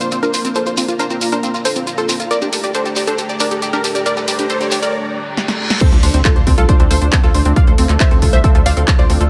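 Uplifting trance in D minor at 137 BPM, euphoric and emotional, this excerpt from a longer piece builds for its first 5.8 seconds over Bbadd9 and then Gmadd9 as a lush, detuned unison pluck carries the melody under a filter sweep and tape echo, joined by a silky analog string pad, a nasal sequenced arpeggio with dub echo, a grainy shekere, and a techno kit of punchy snare, handclaps, hats and crash. The pluck, pad and arpeggio pump to the sidechain, as do the kit's hats and crash. A very quiet riser and reverse cymbal lead into a drum fill, and at 5.8 seconds the drop lands on an impact and a Dm7 chord as a heavy, up-front kick enters, with a tight, driving sequencer bass following a moment later, all set in light reverb.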